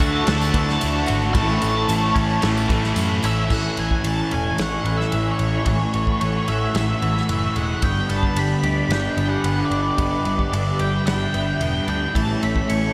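A dreamy rock mix soaked in a lush hall reverb opens this blissful, hazy shoegaze and dream pop passage, cut from a longer piece and moving at a straight 111 BPM in 4/4 in A major. An octave-fuzz lead guitar carries the melody with a warm, distorted tone and tape echo, floating over a swirling, nasal analog pad whose detuned, slow-attack chords are colored by phaser and chorus. Beneath them, a bright, twangy clean electric guitar, recorded direct and compressed, picks arpeggios through analog chorus and tape echo. A crunchy overdriven guitar with reverse reverb and a dark, thick fuzz guitar with ensemble chorus play riffs, joined until 3.5 seconds by a double-tracked, sludgy distorted guitar riff. A round, punchy, foam-muted electric bass anchors the low end, while a loose acoustic drum kit with a punchy kick, medium-tuned snare, a rolled-off top and a small-room feel drives the groove, with a jingly, saturated tambourine sitting in the background until 3.4 seconds. 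The harmony drifts from Dmaj9#11 to A, then through Amaj7 and G before settling back on A.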